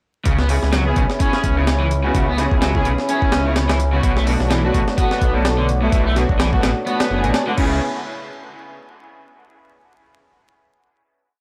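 A thick, menacing detuned saw bass anchors this short, energetic breakbeat piece at 127 BPM in C# phrygian, its skipping syncopated line sitting up front beside a compressed, pitched-up sampler-style break with a thumpy kick, hi-hat, snare and crash in studio reverb. A crunchy, double-tracked overdriven guitar repeats a picked 16-step riff through analog delay, while a dark string section plays soft, bowed dotted-rhythm stabs, also through analog delay, and a moody analog pad holds chorused, pumping chords in the background, moving from C#m7 to Bm7. The raw, gritty recording carries transformer saturation and vinyl crackle, and after the drop runs from 0.3 to 7.8 seconds, a final hit closes the piece.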